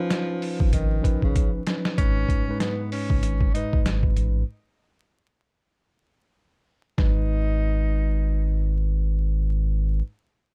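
A breathy tenor saxophone and a mellow tine electric piano open this dark, moody boom-bap hip-hop excerpt together, set in G# dorian at 96 BPM with a swung 16th-note feel. The saxophone carries a jazz-style solo melody with vibrato, soft attacks and scooped notes, colored by tape echo and filtering, while the clean, direct electric piano accompanies through a cassette-tape tint. A compressed, pitched-down sampler-style kit arrives at 0.1 s with a thumpy kick, a medium-tuned snare and hi-hat, gritty and up front, rolling into a fill early on before dropping out at 7.2 s. A deep, thick saturated sub bass enters at 0.6 s and holds sustained sine tones forward in the mix through the close. The harmony moves from C#7/E# to G#m, opens into a chordless break, then settles back on G#m, framed by a dark production with vinyl crackle and little reverb.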